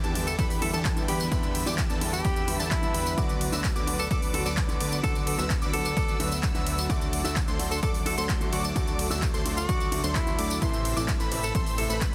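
A straight 4/4 pulse from a punchy, overdriven electronic kick and a crisp big-room dance kit of handclaps, hi-hat, ride and tambourine drives this emotional, powerful festival progressive house excerpt. A fat, wave-folded analog bass pumps beneath detuned supersaw stab riffs and catchy plucky unison lead arpeggios echoing with delay. A clear grand piano sits in the background, and a very quiet, lush string section holds sustained chords. Meanwhile, a warm alto saxophone enters at 0.3 seconds with a vibrato-laden, scooped pop-style solo melody, moving over Em7, Bm/D, D and Am in a dense, heavily limited mix.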